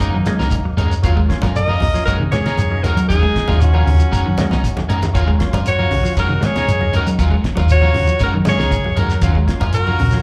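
A bright alto saxophone with light vibrato and tape echo leads this driving, hypnotic afrobeat excerpt, shadowed by a close-miked trumpet second line and set over a round, hollow-body fingered bass, a dry, damped 70s kit with a fat snare that plays a fill from 4.5 to 5.1 seconds, thin-skinned low-tuned congas, a grainy shekere, dark clean guitar arpeggios, slightly broken-up guitar stabs with chorus and tape echo, and a lightly overdriven tonewheel organ on slow rotary entering at 0.3 seconds, all cycling between Gb69 and Ebm9 in a live club sound heard through the venue's PA.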